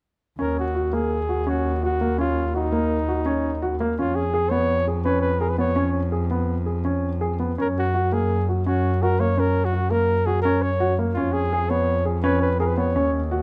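Contemporary chamber music in a restless, pensive 5/4 at 168 BPM in Eb minor, this short excerpt sets a close-miked, jazz-style flugelhorn melody with vibrato over intimate baby grand arpeggios carrying audible action noise and an earthy, bowed double bass with light vibrato, all three up front in a detailed, lightly reverberant sound as the chords move from Ebm7 through Db7/F and Gb.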